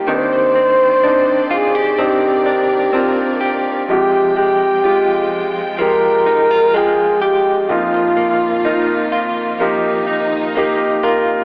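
A clear grand piano with audible action noise, a distant, bowed studio string section holding soft-attack chords, and a compressed, direct-recorded clean electric guitar picking tremolo arpeggios open this melancholic, longing pop ballad in C minor at 63 BPM, where a dark, breathy flugelhorn colored by cassette tape carries a whispered, jazz-style melody up front from 0.1 to 9.1 s over Cmadd9/Eb, Fmadd9 and Bbsus4/F, the mix sitting in moderate spring reverb with the lo-fi character of a home cassette recording heard through AM radio.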